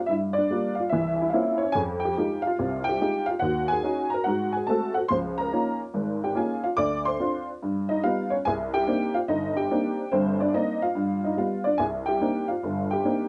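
Swinging and late-night in feel, this short excerpt of solo jazz features a honky-tonk upright piano alone, playing from 0.1 to 13.3 seconds across a broad span from the deep bass to the upper treble. The piano sits up front with a detuned, jangly, woody vintage character, touched by light reverb. Its harmony moves through rich minor-ninth, altered dominant and augmented chords before settling back on C minor ninth at 11.8 seconds.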